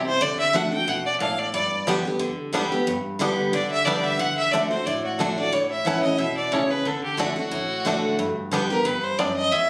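Rustic and joyful, this short bluegrass cut from a longer piece moves along in 4/4 with a light swing. A clear, focused fiddle carries the melody up front, bowed by a single player with light vibrato, and it steps into a solo at 2.9 seconds that runs to the end. Beside it, a bright, full-bodied dreadnought guitar is picked as accompaniment, also up front, with an audible finger squeak. A twangy, percussive banjo played with fingerpicks enters at 0.6 seconds, adding arpeggios a little further back until 9.3 seconds. The harmony moves through D, G and A, and the sound has the feel of a phone capturing the band in a club, with moderate reverb and compression.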